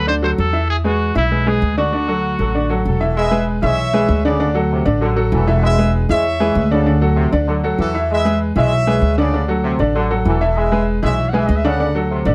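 A clear, punchy solo trumpet opens this festive, sunny Latin excerpt up front, carrying the melody with light vibrato and a vintage pop style before it drops out at 2.8 s. At a brisk 195 BPM in a straight 4/4 feel and E major, a mellow trumpet section takes over the melody at 2.9 s with an ensemble sound, and a tight, distant trombone section adds a second line from 3.2 s, its tone roomy, mellow and punchy. Underneath, a worn grand piano with short sustain keeps up the accompaniment throughout, while an up-front upright bass played pizzicato on gut strings gives a woody, dark, thumpy foundation. The harmony swings back and forth between D and E, landing on D7 at the close of this section cut from a longer piece. Light reverb gives the whole a gentle sense of space.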